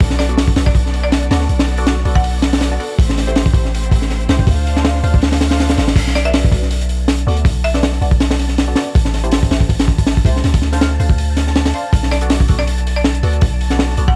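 A crunchy, saturated breakbeat kit with a high-tuned snare, tight kick and dark cymbals drives this dark, raw drum and bass and jungle excerpt at 161 BPM with a light 16th-note swing, sitting up front beside a deep, sine-like 808-style bass that runs throughout in B phrygian. Lush bowed symphonic strings hold vibrato-rich chords in the background until 5.9 seconds, while a muted, detuned sawtooth dub stab with phaser, tape character and echo moves through Bm7, Am7 and Dm7, and a buzzing hard-mallet marimba carrying lo-fi sampler grit and dub echo plays brief melodic phrases. From 6.9 seconds an airy, breathy wind-like noise texture with its own reverb hangs behind, all beneath a layer of vinyl crackle.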